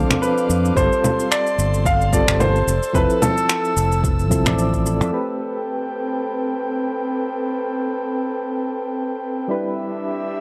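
Wistful and relaxed, this sunset chillout excerpt at 110 BPM with a light 16th-note swing opens with an intimate grand piano melody, its action noise audible, over round, mellow electric-piano-like synth keys with chorus and tremolo, a breathy, detuned pad with sampler grit, an up-front fingered electric bass with tube saturation, and overdriven, low-passed electronic snaps, congas and shaker, joined at 0.8 seconds by a deep kick. The piano drops out at 4 seconds and the rhythm section by 5.1 seconds, leaving keys and pad drifting over Am9 and Em7 in a dry, gritty hardware sound with light digital ambience.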